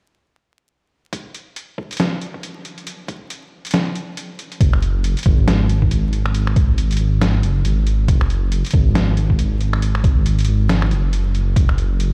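Deep dubstep at 138 BPM in a swung, half-time 4/4, heavy and meditative, cut from a longer piece and heard as if played on a big sound system in a bare room with stone room reverb and vinyl crackle. From 1.1 seconds a thumpy, pitched-down electronic kick sits up front with a high-pass filter, together with a muffled, compressed trip hop sampler-style kit of finger snaps, hi-hat and a medium-tuned snare. At 4.6 seconds a dark, detuned saw bass enters between F#1 and G#1, deep, rumbling and beating with a fast attack and sustained notes.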